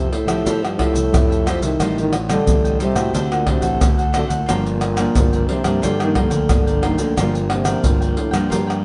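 Yearning and bittersweet, this short cut from a longer samba and choro piece moves at 89 BPM in G minor, with a breathy, whispered trombone carrying the melody in its low register over a chord path of Fmaj9, Am7b5, D7 and Gm7. Bright, crisp picked cavaquinho and a fingerpicked nylon-string guitar, with fresh strings and audible finger squeak, sitting in the background, fill out the harmony, while a dark, round fingered electric bass adds overdriven fuzz beneath. Pandeiro, maracas, tamborim and a deep surdo sit up front from 0.1 seconds, the band playing live together in a moderate stone room with a slightly dulled top end.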